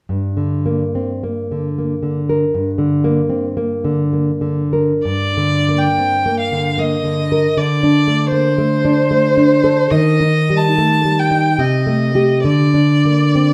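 A romantic duo for violin and classical guitar in G minor, this elegiac, yearning excerpt moves in a rubato 3/4 at roughly 61-80 BPM. The dark, full-bodied nylon-string guitar plays thumb-plucked accompaniment from 0.1 seconds, alone until the violin enters. The focused violin carries the melody with vibrato from 5.1 seconds, sounding distant. Both instruments sit up front in a moderate recital hall reverb, and the harmony travels from G minor through E-flat toward a closing Bbadd9 over D.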